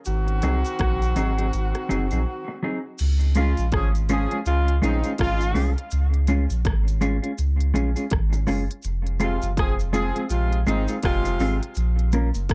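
A dark production with light reverb carries this laid-back, uplifting roots reggae excerpt in Db major at 82 BPM, its sixteenths swung. A deep, round sine sub bass sits up front beside a clean, compressed electric guitar, while an electronic drum kit with a heavy kick and smooth hats plays over a cabasa in the background. A horn section with light vibrato and a smooth top carries the second line through tape echo, which also colours the guitar, and after a short break ending at 3.0 seconds the chords move from Ab7 to Db, Fm and Bbm.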